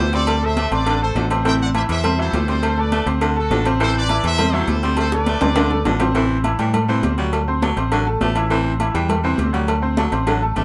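Joyful and festive, this salsa excerpt drives along at 204 BPM in a straight 4/4, moving through D5, Am and D7 harmonies before settling on Am7. A brilliant, tightly voiced trumpet section carries the melody with pop-style vibrato until 6.0 seconds, while a bright, woody upright piano, slightly detuned and worn with audible action noise, supplies intimate accompaniment throughout. Underneath, a round, punchy fingered electric bass sits dark and up front, and a raspy, breathy baritone saxophone adds a gritty second line with light vibrato. The percussion bed layers ringing, high-tuned congas played with soft hands and tight cowbell and bongos in the background, along with close, dry agogo bells and metal-shell timbales, and drum fills arrive at 5.0 and 10.3 seconds. A moderate small-room reverb gives the ensemble a lively, compact sense of space.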